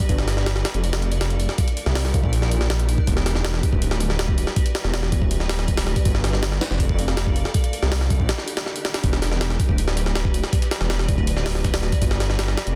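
A pitched-up jungle drum kit opens this frenetic, raw drum and bass excerpt at 161 BPM, its thumpy kick, high-tuned snare and hi-hat sounding gritty and compressed up front, with the ambience of a large room. A detuned saw bass enters at 0.1 seconds, thick, beating and menacing, running from D1 to C2 with a saturated, sustained tone. After a brief break from 8.3 to 9.0 seconds, a very quiet, dusty soul drum kit adds tape-warm hi-hat and a medium-tuned snare beneath, all within a dense, heavily limited mix carrying little reverb.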